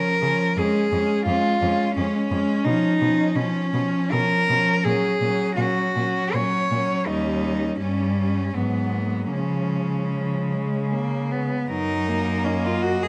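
A clear, focused cello carries the melody up front, singing with vibrato across a range from B3 to D#5 in this lyrical, serene classical excerpt for cello ensemble. Beneath it, a rich, smooth cello traces a second line, while another rich cello supplies a focused accompaniment, and a clear, even cello holds the bass from 0.2 seconds onward. All four are bowed by single players with vibrato, moving in a gentle 3/4 at roughly 75 to 87 BPM with a rubato feel in F# major. The harmony drifts from C# through C#7/B, F#/A#, D#7 and G#m7 before settling on F# at 11.7 seconds as the opening material returns. Close, detailed microphones capture the playing within a moderate recital hall reverb that lends the ensemble an unhurried glow.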